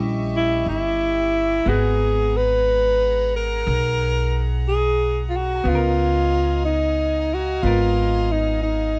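A slow 60 BPM jazz ballad in 4/4 with a 68% swing on the eighths sets a melancholic, smoky mood in this short fragment, moving from Eb7b9 to Abm9 at 1.7 seconds and Db13 at 5.7 seconds under light reverb. A woody pizzicato upright bass sits up front beside a breathy alto saxophone, which carries the melody with soft-attacked vibrato from 0.4 seconds. Further back, a dark, clean, picked hollow-body electric guitar accompanies while a distant chamber string section holds pure, floating bowed chords.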